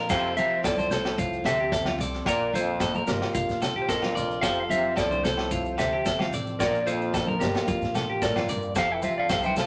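A sunny, joyful highlife guitar band groove in F major at 111 BPM opens at once with a dark, clean electric guitar carrying the melody. From the first moment it is joined by a trombone with plunger mute, a picked steel-string acoustic guitar, a slightly broken-up electric guitar and a woody pizzicato upright bass. The fingered lead guitar sits up front, while the twangy, compressed second electric guitar plays arpeggios. Further back, the trombone adds a breathy, jazz-style second line with wah-wah and vibrato, and the acoustic guitar's accompaniment has an auditorium-like quality. A vintage drum kit with a punchy kick, a high-tuned snare, a crash cymbal and a rolled-off top comes in at 0.1 seconds, along with ringing agogo bells and grainy maracas, and congas follow at 0.4 seconds. The chords alternate between F and Bb over a straight 4/4 feel in a wet studio ambience, in this excerpt cut from a longer piece.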